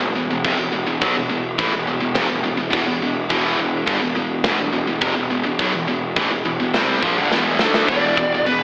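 A wet hall reverb with a small-room ambience gives this brief, relentless and epic heavy metal fragment a big arena sound filtered through an AM radio tone. At 105 BPM in a straight 4/4 in E phrygian, a bright, double-tracked high-gain guitar riff sits up front over a growly, fuzz-overdriven picked bass, while a tight, saturated, gritty and mid-forward drum kit with a medium-tuned snare, tight kick and crash cymbal sits in the background from 0.4 seconds. A drum fill arrives at 7.3 seconds before a bright high-gain lead guitar melody enters up front at 7.9 seconds.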